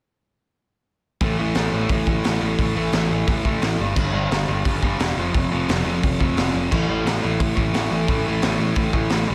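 Urgent and angry, this punk rock excerpt from a longer piece charges along at 174 BPM in a straight 4/4, centered on A minor. At 1.2 s the full band starts together: an overdriven semi-hollow guitar sits up front playing the riff over A5, G5 and F5, landing back on A5 at 6.7 s, its picked hollow-body tone warm under the distortion. Beneath it, a picked electric bass is growly and bright, with a direct, amped character and a punchy attack. The raw garage drum kit is gritty and saturated, also up front, with a high-tuned snare, a punchy kick, dark cymbals, a rolled-off top and a pumping small-room sound across crash, hi-hat, kick and snare. A moderate, lush hall reverb and small room ambience open the mix into a big arena sound.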